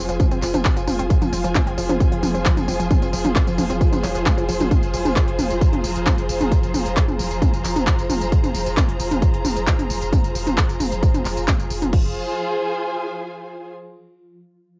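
A barely audible electronic downlifter opens this dark, hypnotic excerpt of driving peak-time techno in F minor at 133 BPM. Beneath it sit a deep, thick, saturated sub bass with overdrive and a low-pass filter, and a swarming, tense drone of detuned, wave-folded tones with granular, evolving movement and built-in reverb in the background. A dark studio string section adds lush, bowed ensemble texture with expressive vibrato and a smooth top. An up-front electronic kick and a layered techno kit of crash, handclaps, smooth hats, tambourine and toms arrive almost at once, both tape-warm and re-recorded in a small room. A punchy, detuned sawtooth unison pluck riff with overdrive and analog delay cuts through until 4.7 seconds and returns briefly near the end, while sidechain pumping makes the bass, drone, strings and pluck breathe with the straight 4/4 groove. The drums, bass and drone fall away around 12.0 seconds, leaving the strings alone until 13.7 seconds, and the whole has a light-reverb, home cassette character.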